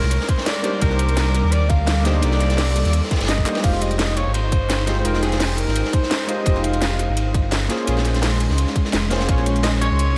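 A dreamy, lush mix soaked in huge ambient reverb opens this short cut from a longer liquid drum and bass piece, with a deep, full sine sub bass with octave sitting up front beneath everything. A clear alto saxophone carries the jazz-style solo melody with vibrato, sounding distant and roomy through a diffuse ambient delay; it plays until 7.3 seconds and returns briefly at 9.6 seconds. A soft, mellow chord stab with a detuned, evolving tone and filter sweep moves through Cm9, Fm9 and Bbm9, treated with chorus and the same delay, while an airy, breathy pad with a vintage warble holds sustained chords in the background, pumping against the beat. The drums layer a tight, tape-warm electronic kick and a garage kit with a cracking snare, crisp hats, handclaps and crash, over a gritty, saturated breakbeat kit with dark cymbals and a rolled-off top tucked behind. A drum fill at 3.5 seconds marks the turn to the second chord, and the swung sixteenths give the groove a gently loose feel.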